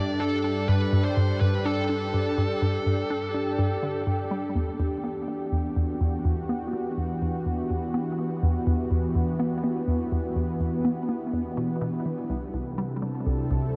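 Drenched in a huge, echoing reverb that suggests a vast space, this cosmic, hypnotic fragment of sequencer-driven ambient space music moves at 124 BPM in E minor, tuned slightly flat of standard pitch. A hollow, bouncy square-wave pluck carries a riff through chorus, phaser and tape echo, while a thick, detuned sawtooth pad sits up front with slow-blooming sustained chords moving from Gsus2 to Em7 at 4.6 seconds and then C6. At the start, a dark, distorted electric lead guitar picks a bluesy melody through tape echo over an evolving, wave-folded analog drone bass, and both fall away by about 4.5 seconds.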